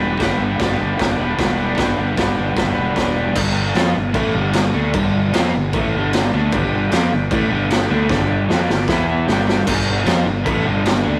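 A rough rehearsal-room recording with light reverb frames this swaggering, raw garage rock fragment in G major at 152 BPM: a bright, double-tracked crunchy guitar riff with spring reverb sits up front beside a gritty drum kit with a boomy kick, a fuzzed fingered bass holds the low end, and a buzzy combo organ sustains chords in the background at the start, drops out, then returns at 6.5 seconds, while a drum fill arrives at 8.1 seconds.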